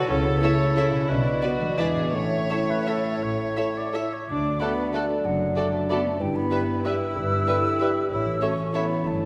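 Festive and elegant, this classical excerpt in 3/4 moves with a rubato feel at a lively 157-208 BPM, starting in A major and shifting to D major at 4.3 s. A chamber violin section carries the melody with soft-attack, sul tasto bowing and light vibrato, while an airy silver flute, a solo oboe and a dark, background clarinet weave second lines alongside a richer studio violin section. A very quiet viola section, a background bassoon, mellow French horns, a ringing fingerpicked harp playing arpeggios, and a cello and double bass section underpin it all, bathed in a wet scoring-stage reverb.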